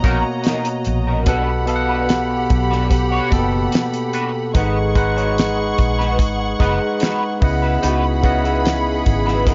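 A straight 4/4 groove at 73 BPM from a dry, damped drum kit with a fat snare and tight kick anchors this lush 1970s-style soul excerpt, joined by a round, foam-muted fingered bass and an up-front, barky electric piano with light overdrive. A slightly broken-up electric guitar riff runs through wah and ensemble chorus, while con sordino strings add a veiled second line and a very quiet, ringing vibraphone plays until 7.5 seconds, over chords moving from Bmaj9 through Gmaj7/B and G#m7 to C#m11. At 7.8 seconds the band hits an accent as a mellow horn section adds brief stabs in the background.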